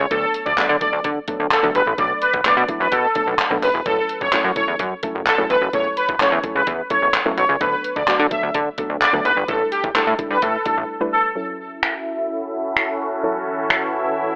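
A straight 4/4 dance-pop pulse at 128 BPM drives this bittersweet excerpt from a longer piece, with an up-front pop drum kit of knocking kick, warm hats, finger snaps and handclaps, all overdriven and running to 13.8 s. A punchy, funky analog bass and a dark, round pluck pump beneath a smooth, detuned supersaw melody colored by phaser and tape echo, moving through chords such as D6, Bm7 and F#m7 before a brief silent gap at 10.9 s. At 11.4 s an airy, evolving resonant pad enters alongside the pluck and drums with a filter sweep, all heard through a gritty, telephone-like sound with light reverb.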